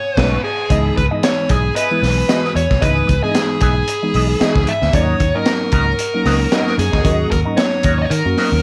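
This is a cool, sly funk excerpt at 113 BPM in 4/4, with a swung sixteenth-note feel in C# dorian, cut from a longer piece. It opens with a band accent over a B13 chord before settling onto C#m9 at 0.7 seconds and moving to D#m7 at 4.9 seconds. A dark, overdriven lead guitar carries the melody up front, while a tonewheel organ holds clear, sustained chords high in the background through a stopped rotary speaker. Entering at 0.2 seconds, a bright, twangy electric guitar with a scooped envelope-filter wah plays accompaniment beside mellow tine electric piano stabs, and a vintage foam-muted fingered bass supplies a round, amped low end. The crunchy breakbeat kit sits up front with a saturated, gritty sound, dark cymbals, a high-tuned snare, a tight kick and a rolled-off top, all in a light reverb.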